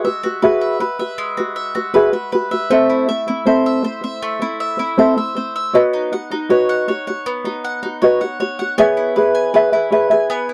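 A mellow, thumb-plucked ukulele and a bright, double-strung bowl-back mandolin picking arpeggios sit up front together from the start in this carefree, sunny acoustic pop fragment, moving through Eadd9, Am and Badd9 before shifting to C#m7 at 8.8 seconds, all captured in a dry, close 1970s-style studio sound with a moderate booth ambience.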